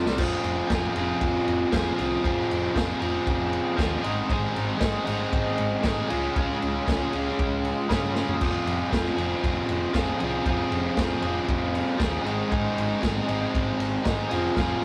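A drum fill opens this raw, menacing garage rock excerpt as a biting, overdriven guitar riff and a dark, round hollow-body bass start together, moving at 117 BPM in a straight 4/4 through F minor, Ab and Db chords. The bright, double-tracked guitar sits up front, while the acoustic kit pairs a punchy kick and medium-tuned snare with crash, ride and toms, its gritty, saturated sound rolled off at the top and pumping in the small room. Further fills land at 8.1 and 14.6 seconds, all captured as a rough rehearsal-room recording with a moderate short reverb.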